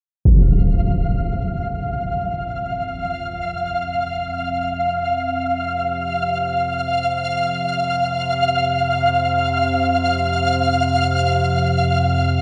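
Dark ambient drone in free time with an unsettling mood: a huge, bright impact strikes at 0.3 s, a flickering, grainy granular texture on F5 with its own reverb enters at 0.8 s, and a nasal, evolving analog drone of sawtooth and pulse-wave tones with chorus fades in from 1.6 s between F2 and C3, all three parts sitting up front in a cathedral reverb with a 6.5-second tail, in this fragment cut from a longer piece.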